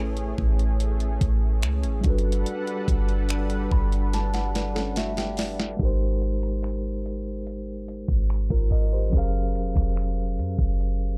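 A deep, boomy 808-style bass sits up front through this dreamy, smooth contemporary R&B passage, its clean sine tone striking with a fast attack and decaying into dark lows. A crisp 8-bit digital drum machine carries finger snaps, hi-hat, a thumpy kick and a medium-tuned snare, overdriven and re-recorded in a small room, with a drum fill from 4.1 to 5.8 seconds. A mellow tine electric piano, heard through built-in speakers, supplies accompaniment across the whole clip and adds fills of its own. A lush, thick sawtooth pad with detuned unison, chorus and sidechain pumping holds slow-attack chords until 5.8 seconds, and a small, thumb-plucked nylon-string guitar plays brief arpeggios in the background with tape echo from 4.5 seconds. The harmony moves through major ninth chords in a straight 4/4, and the gritty hardware recording is low-pass filtered with little reverb.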